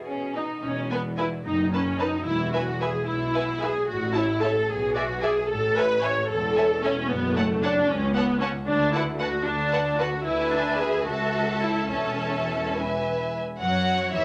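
A lush, up-front viola section carries the accompaniment in this graceful, lively classical-period movement for string orchestra, its bowed vibrato smooth and even from the very start. Beneath it, a close cello section supplies a focused bass line, joined at 0.6 s by a symphonic double bass section whose clear tone has a biting, intense edge. A chamber violin section adds a second line almost immediately, while another violin section takes the melody from 0.9 s, its high register polished with a smooth top. The music moves in a lilting 6/8 with rubato phrasing, and the harmony settles into a new key area at 7.1 s. A wet studio reverb wraps the ensemble in a short, resonant space, and the passage is cut from a longer piece.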